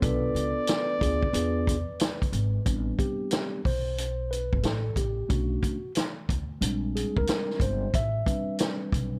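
A dry, gritty recording with little reverb frames this smoky, mellow jazz-hop cut, taken from a longer piece in A minor at 91 BPM in 4/4 with a 16th-note swing. A breathy, close-miked flugelhorn carries the melody with scooped notes for the opening 2.3 seconds, while a metallic, ringing vibraphone with medium mallets and slow motor vibrato sits in the background on a second line, touched with tape echo. A mellow, clean tine electric piano holds the accompaniment throughout and takes a solo from 2.7 seconds to the end. Underneath, a pizzicato upright bass with steel strings sounds woody, growly and thumpy, and an up-front vintage drum kit plays hi-hat, tight kick and medium-tuned snare with a rolled-off top. The harmony moves from Bm7b5 and E7b9 into Am11, Bm9 and Bb13 before returning to Am11.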